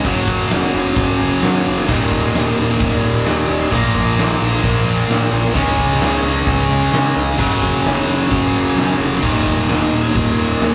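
A tight, bright distorted electric guitar leads this aggressive, heavy hard rock passage, its picked, double-tracked riff sitting up front across the full 10.7 seconds in Eb minor. Beneath it, a huge acoustic arena drum kit drives a straight 4/4 at 131 BPM, with a punchy kick, a fat snare and crashing cymbals filling a big room sound, and a drum fill arrives at 5.3 seconds. A fuzz-laden picked electric bass, overdriven and punchy, enters at 0.1 seconds and stays in the background. The chords cycle through Gb5, Eb5, Bb5 and Db5 power shapes, returning to Gb5 and Eb5 near the close. The whole passage has a rough rehearsal-room character with a moderate small-room reverb, and it is cut from a longer piece.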